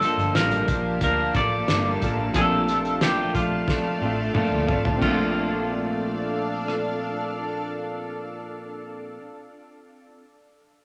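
A straight 90 BPM 4/4 pulse from a cloth-damped, thuddy drum kit with a fat snare and dark cymbals, which plays a fill from 3.7 s and drops out at 6.8 s, carries this hazy, laid-back indie and bedroom pop excerpt in Bb major over Gm9 and Bbmaj7, where a bright, clean picked electric guitar carries the melody above a slightly broken-up, twangy second guitar with warbly pitch drift, a round, foam-muted vintage bass entering at 0.2 s, mellow, detuned lo-fi synth keys with chorus in the background, and a shimmering, ethereal pad with octave-up sparkle, set in a large, wet studio reverb.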